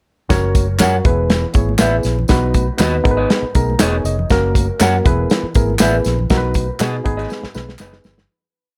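Uptempo 1960s-style soul in G# minor at 120 BPM, passionate and urgent, driven by a punchy, up-front soul drum kit with the snare on all four beats, a round, foam-muted fingered electric bass playing a syncopated line with ghost notes and chromatic approach notes, a bright, barky reed electric piano in close-voiced quarter-note chords with spring reverb and a short fill at 3.3 seconds, slightly broken-up, lo-fi electric guitar chops on the backbeat from 0.8 seconds, dry tambourine and group handclaps on the backbeat, and very quiet, high-tuned congas, in a dry mix that fades out from 6.3 seconds.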